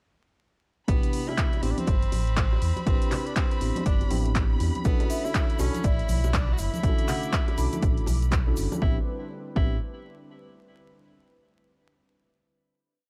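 A punchy, overdriven electronic kick drives a four-on-the-floor deep house groove at 121 BPM with a 16th-note swing, joined by programmed closed and open hats and a clap backbeat on the drum kit, while soft, saturated bongos and congas play syncopated patterns in the background. A deep, full sub bass with an octave layer pumps against the kick with a syncopated riff, and a mellow tine electric piano, heard through its built-in speakers, stabs held Am11 chords with syncopated pushes and tape echo before shifting to Bm11 at 4.8 seconds. Over this smooth, deep bed, an edgy, forceful tenor saxophone plays jazz-style call phrases with scooped notes and vibrato, while a clear, distant violin section holds a single high note far back in the mix. From about 5 seconds a grainy egg shaker adds sixteenths, an airy, breathy pad with chorus drifts in, and a woody marimba offers short answering phrases with tape echo. 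The groove resolves at 8.8 seconds onto a closing Am11, all captured with a dry, gritty hardware sound and a touch of vinyl crackle.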